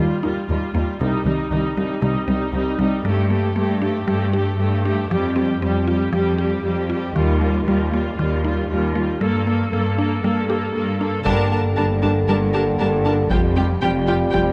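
A steady, straight 4/4 pulse at 117 BPM drives this vast, relentless stretch of hybrid orchestral and electronic film score in G minor, cut from a longer piece. From the opening, a woody, round synth pluck spins arpeggios in the background through chorus and digital delay, while a lush viola section carries the accompaniment up front and bowed cellos hold the bass with rich vibrato. The harmony moves through Ebadd9, Cm, Gmadd9 and Fsus2. Dark, soft-attacked French horns slip in with sustained chords at 11.2 seconds, and at 11.3 seconds the full band lands an accent and the score swells in numbers: mellow trombones join the horns with sustained chords, distant violins add a second line, and double basses deepen the low end in the background. A taiko ensemble joins there too, struck with heavy sticks and sounding close and dry against the moderate scoring-stage reverb.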